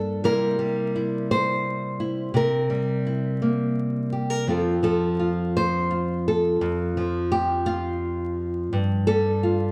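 Peaceful and hopeful, this brief folk passage cut from a longer piece features a solo fingerpicked nylon-string guitar, small and up front, drifting in rubato 6/8 at about 57 BPM in F major (tuned to A4 = 439 Hz) across a range from F2 to C5, moving from C7 to F as a second section begins at 4.5 s and settling on Fadd9/G, all within a dark, warm production steeped in recital-hall reverb and flecked with vinyl crackle.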